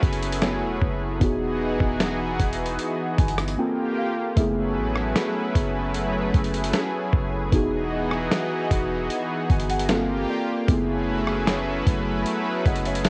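Recorded at home onto cassette with light reverb, this smooth, romantic contemporary R&B excerpt at 76 BPM sets a gritty, up-front sampler-style drum kit with a thumpy kick, snare, rim click and hi-hat over a deep, boomy 808-style bass, while muted, felt-like synth keys with chorus and tape colour play accompaniment and fills at 2.8 and 9.1 seconds, a lush, detuned unison pad sustains F#m11, Emaj9 and Gm11 chords with chorus and sidechain pumping, and a very quiet, round pluck adds texture from 0.4 seconds.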